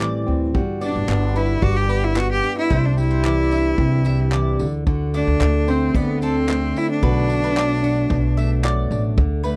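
A straight 4/4 groove from a vintage brush drum kit, dark with a punchy kick, handclaps and tambourine, sits over woody pizzicato upright bass in this reflective, wistful acoustic pop excerpt. Up front, a full-bodied, fingerpicked jumbo steel-string guitar carries the accompaniment while a bright bowl-back mandolin picks arpeggios on its double strings. From 0.8 s to 8.6 s a close, biting cello sings the melody with vibrato and an airy bow, all captured in a dry, close 1970s-style studio sound with light reverb.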